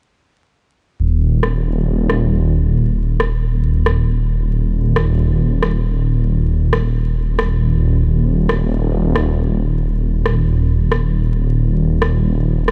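A swelling detuned saw bass dominates this future garage excerpt, an evolving, menacing sawtooth tone built from detuned unison voices with a sine underpinning, shaped by a filter swell, a fast attack and sustained notes that sit saturated and up front from 1.0 seconds. It centers on a deep Eb1, giving the ghostly, wistful mood a heavy foundation. An electronic rim click joins at 1.4 seconds, a tape-warm, produced sound placed close in the mix, with a low-pass filter on the snare and studio reverb around it. The tempo sits at 136 BPM in 4/4 with a 66% swing on the sixteenths, lending the groove a loping shuffle. Overall the production is dark and dry, with vinyl crackle and a rolled-off top end that keeps the sound muffled and nocturnal until both parts stop at 12.7 seconds.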